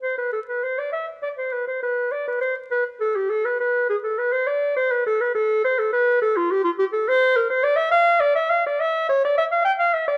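Classical, baroque-style fantasia for unaccompanied clarinet, an introspective and solemn excerpt cut from a longer piece, moving at 68 BPM in dotted-quarter 6/8 with a rubato feel and settling into D minor from 7.1 s, tuned to A4 = 436 Hz. The solo clarinet, warm yet distant and roomy, sits up front across its 10.2 seconds, ranging from F4 to G5. Close, detailed microphones and light reverb frame the sound, with vinyl crackle beneath.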